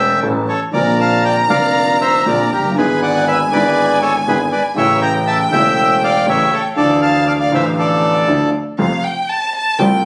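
Tense and sultry, this rubato tango fragment sets a dark, reedy bandoneon melody up front with plate reverb against a close, expressive violin second line rich in vibrato and portamento, an intimate grand piano with audible action noise and deep bass, and a distant bowed double bass of gut-string tone, before the violin takes a brief solo at 8.8 seconds, captured on a phone in a studio room with moderate reverb.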